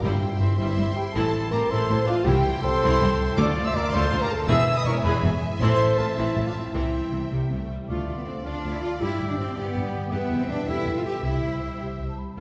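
In a straight 6/8 lilt at 107 BPM, this determined, adventurous slice of heroic film score sets a vibrato-rich violin section singing the melody over a lush body of strings, with a second violin section, clear violas, smooth cellos and distant double basses, while a close-miked cor anglais, a hollow, pure concert flute and, from 7.9 s as the music turns to D dorian, a warm clarinet weave second lines, roomy French horns hold mellow chords, a bright, ringing harp arpeggiates, and very quiet, dry timpani strike at 0.0 and 3.4 s, all set back in a wet scoring-stage reverb.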